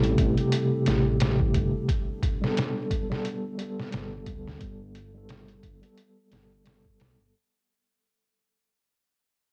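A mellow tine electric piano sits up front, its clean, direct tone shaded by tremolo, 12-bit sampler grit, a low-pass filter, tape echo and cassette wear as it plays accompaniment. This brooding, dark trip hop excerpt, cut from a longer piece, moves in a swung 4/4 from Am7 to Gadd9 at 1.9 seconds. Beneath it, a detuned saw bass rumbles deep and beating, its sustained unison tone thickened by tube saturation. The sampler-style drum kit is also up front: compressed and pitched down, with a thumpy kick, a medium-tuned snare and hi-hat, gritty and tape-warm, with studio reverb. In the background, a moody analog pad holds sustained chords with a slow attack, long release, chorus and a moving notch. The home cassette recording has light reverb, and the whole clip fades out across its 7.3 seconds.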